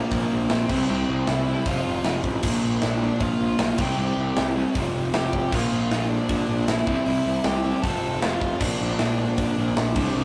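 A straight, driving 4/4 beat from a big, up-front rock kit, with punchy kick, medium-tuned snare and bright crash and hi-hat, powers this urgent, aggressive punk rock excerpt cut from a longer piece. A compressed, overdriven rhythm guitar and a sludgy distorted guitar sitting in the background grind out low riffs over a growly fuzz bass, while a dark, smooth lead guitar carries the melody above them through Bb, C and F chords. Light reverb and a rough rehearsal-room sound give the track a raw feel.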